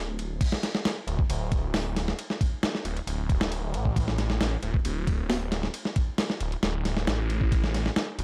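A light reverb and a layer of vinyl crackle give this short breakbeat excerpt a dusty, lived-in sheen, cut from a longer piece. The mood is gritty and swaggering, in a straight four-beat feel that settles into a drop from 0.4 seconds onward. A phased, detuned saw bass opens the clip, thick and swirling, blending sawtooth, square and sine tones in a saturated unison that sits up front in the low register. A sampler-style soul drum kit joins at 0.2 seconds, compressed and gritty, with a thumpy kick, a medium-tuned snare, hi-hat, ride and crash cymbals. High-pass filtering thins the drums, and a small room ambience surrounds them as they sit up front beside the bass.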